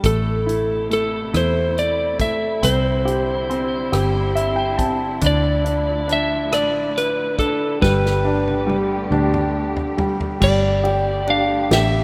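A lush hall reverb blooms around this rough home-demo mix, a short piece cut from a longer romantic, tender pop ballad in a slow six-eight at 46 BPM. An electric slide guitar carries the melody up front, its tone gently broken-up and compressed, singing over chords that move from Amadd9 through Cadd9 and Dmadd9 to Gadd9. A clear, polished concert grand piano with deep bass and short sustain provides the accompaniment and steps forward with a fill from 3.9 to 5.2 seconds. Beneath it, a veiled, con sordino string section holds smooth bowed chords with vibrato, while a dark, foam-muted vintage electric bass sits round and punchy in the foreground. A natural country drum kit, with a punchy kick and medium-tuned snare ringing in a studio room, plays through crash, ride, hi-hat, rim click and toms, playing a drum fill from 7.8 to 10.4 seconds before a new section opens at 10.4 seconds.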